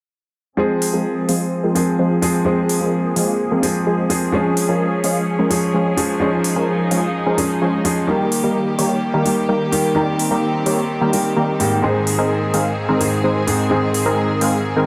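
Light reverb and a small-room ambience frame this short cut from a longer festival progressive house track, its mood anthemic and emotional in a straight 4/4 metre. From 0.6 seconds a smooth, vintage grand piano sits up front with accompaniment treated by digital delay, while a bowed studio string section holds soft-attack, floating chords under a filter sweep. A bright, punchy supersaw stab carries the riff alongside them, its detuned unison sawtooth tone shaped by a fast attack, cassette tape colour, low-pass filtering and its own delay. Crisp electronic hi-hats join at 0.8 seconds, overdriven, layered and re-recorded in a large room, sitting lower in the balance than the piano and stab. The harmony moves through Fm, Db, Eb and Ab before the passage ends at 14.9 seconds.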